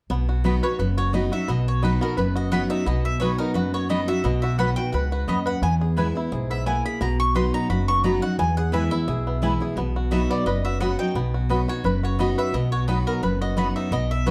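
A lightly swung eighth-note feel in 4/4 drives this rustic, joyful bluegrass excerpt. An up-front picked steel-string guitar with a bright, full-bodied dreadnought tone carries the accompaniment, while a pizzicato upright bass, woody and also up front, anchors the low end. A banjo played with fingerpicks adds twangy, percussive arpeggios. One mandolin enters with bright double-string stabs at 0.4 s, and a second, warm-toned mandolin carries the melody from 0.6 s. The harmony moves between B and E, first shifting at 5.6 s, all set in a dark production with a moderate large-studio reverb.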